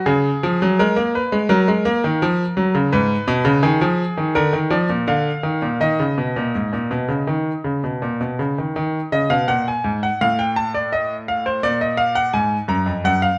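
In a straight 4/4 at 83 BPM, this driving yet contemplative baroque-style two-part invention in Eb minor is played by a solo grand piano tuned to A4 = 445 Hz, spanning F2 to Bb5 across a short 13.4-second excerpt from a longer piece. The piano sits up front with a bright, brilliant and intimate tone, long sustain and audible action noise, caught by close, detailed microphones in a moderate stone room. Harmonies move from Db7 and Gb through Fdim/Ab and Bb before the second section settles on Ebm at 8.8 seconds and passes through F7/A to close on Bb5.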